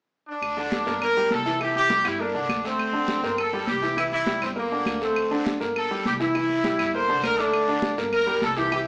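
Driving and fiery, this salsa passage, cut from a longer piece, races along at 202 BPM in 4/4 with a straight feel, cycling through Gm, C and D5 chords. A punchy horn section sits up front carrying the melody from 0.3 seconds, its bright ensemble tone touched with light vibrato in a pop style. A brilliant upright piano joins at 0.6 seconds as accompaniment, intimate and long-sustaining, with its action noise audible. Underneath, a dark, thumpy pizzicato upright bass on gut strings holds the low end, while congas with a thick, high-tuned skin, woody claves and a raspy guiro sit close in the background. The band plays live in one room, bathed in a wet large-studio reverb yet heard with a small-speaker sound.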